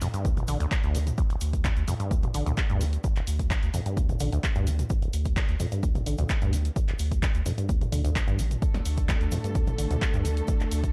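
Acid house with a driving, trippy feel, where a rubbery, tube-saturated acid bass riff runs through a filter sweep throughout, backed by a thick, pumping sub bass, an up-front punchy kick, an analog drum machine playing handclaps, hi-hat, snare and toms, and a grainy cabasa in the background, before a smooth, bowed studio string section enters at 8.6 seconds with sustained, pumping chords, all set in a dark production with light reverb and digital ambience.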